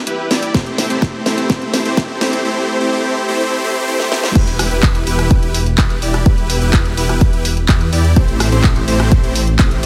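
Euphoric and powerful, this festival progressive house excerpt in E minor at 126 BPM opens on a build-up of huge, lush supersaw chords with sidechain pumping, low-pass filtering and delay over a house kit with a cracking snare, handclaps, hi-hat, rim click and crash, a punchy kick entering at 0.5 seconds, then drops at 4.4 seconds as a thick, menacing detuned saw bass arrives, pumping beneath the bright chords in a light reverb.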